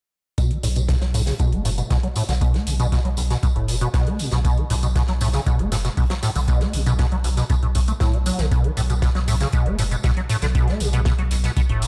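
This short cut from a longer acid house track has a dark, lightly reverberant production with a studio-room sheen, giving it a trippy, raw mood at a straight 118 BPM in 4/4. A deep, tape-toned electronic kick drum enters at 0.4 seconds. Metallic analog hi-hats, a small-room acoustic kit with airy hi-hat and a medium-tuned snare, and a jingly, compressed tambourine fill out the beat. The centerpiece is an up-front, squelchy, resonant square-wave acid bass riff, smooth and mellow with a filter-sweep character, carrying tube saturation, ensemble chorus and delay as it ranges from B1 to A3 over a B5 chord. Underneath, a round sine sub bass enters at 0.6 seconds, holding sustained notes between F#1 and B1 with sidechain pumping.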